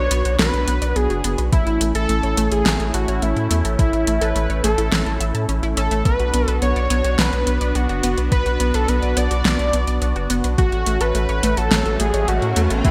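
A thick, detuned unison lead carries the melody from the opening moment, its bright sawtooth tone given vibrato and trailed by digital delay, while a swirling phased pad, a round analog bass and a chorused pluck sound together beneath it. This nocturnal, nostalgic synthwave excerpt moves in a straight four, its chords shifting from Bm to A, back to Bm, and on to F#m/A. The deep bass sits up front, its sustained notes pumping against the beat alongside the evolving, detuned pad. In the background the pluck plays arpeggios with a short decay, roughened by 12-bit sampler grit and echoing through delay. A layered pop kit with a fat snare and metallic hats arrives almost at once, its gated reverb lending punch, and a thumpy, tape-warm electronic kick joins at 1.5 seconds. Near the close, a faint riser enters at 11.4 seconds, all set within a bright 1980s-style digital production and a moderate plate reverb.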